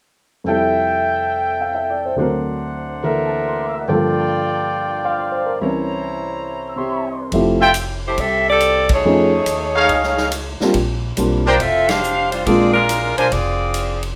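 A swung 4/4 pulse drives this brassy, swinging big band jazz cut from a longer piece. A dark, mellow baby grand piano comps up front from 0.4 seconds, while a clear, present trumpet section punches tight stabs with light vibrato over rich chords such as Fmaj9, D7b13 and C7b9. At 7.3 seconds the second section begins as a woody, thumpy pizzicato upright bass on gut strings and a natural, roomy drum kit with punchy kick, medium-tuned snare, hi-hat and ride cymbal enter together. The warm saxophone section takes the melody at 8.1 seconds, sitting up front with vibrato and a soft attack, and the full band lands two accents as the harmony moves through F7alt, Bb69 and Bb9. The whole thing sits in a wet studio reverb with the rough character of a home demo mix.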